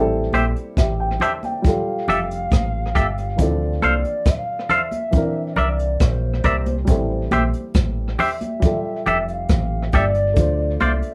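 Bright, twangy electric guitar stabs sit up front in this tender, smooth lovers rock reggae excerpt at 69 BPM in F major, over a round, deep dub fingered bass and a brushed jazz kit with a boomy kick, hi-hat and rim click. A dark, mellow baby grand piano with short sustain fills in the chords, moving through Am7, Fadd9, Dm7 and C9, while high-tuned congas with a thin skin sit in the background. From 1.7 seconds a hollow, woody clarinet-like synth lead carries the melody with vibrato, chorus and tape echo, all in a rough home demo mix with a small room reverb.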